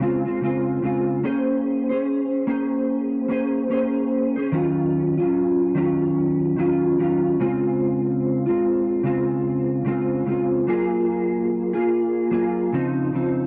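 Dreamy and hazy, this short indie pop fragment drifts at 73 BPM with a gentle sixteenth-note swing, as a lone mellow electric guitar, dark, clean and fingered, sits compressed and up front under an ensemble chorus, vibrato and a cassette-tape effect, moving through lush chords like Bbm9, Ebm9 and Gbmaj9 before settling on Dbmaj9 in a lightly reverberant home-cassette sound.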